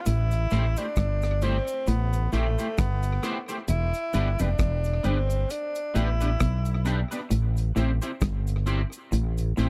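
Roots reggae with a serious, hypnotic mood, cut from a longer piece and captured dry and close in a small 1970s-style room. A clear tenor saxophone with vibrato and tape echo carries the melody until 6.9 s. It plays over a round, punchy fretless bass placed up front, a dark, tight drum kit of kick, hi-hat and rim click touched with tape echo, a low, fingered guitar riff at the edge of break-up, and a soft cabasa in the background. From 0.5 s a second twangy, picked guitar with analog chorus and tape echo also sits in the background, as the harmony moves from Am7 to Em7 and back.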